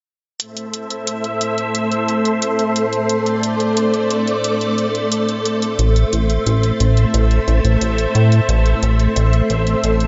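Synthwave in A minor at 89 BPM, this moody, nocturnal excerpt moves in a straight 4/4 and is cut from a longer piece. A lush, vintage string machine sits up front from 0.4 s, holding sustained chords with a slow attack, a sawtooth body with a sub octave, a moving notch and a thick ensemble chorus, first on A minor and then on C over A from 5.8 s. An electronic hi-hat runs beneath it throughout, quieter in the mix, layered and overdriven and re-recorded in a small room. At 5.8 s a glossy, nasal synth bass enters up front, its chorused pulse and sawtooth tones shaped by a filter pluck, a fast attack and a moving notch. Light reverb and a digital ambience frame the sound, which stays dark at the top end and keeps the nocturnal atmosphere intact.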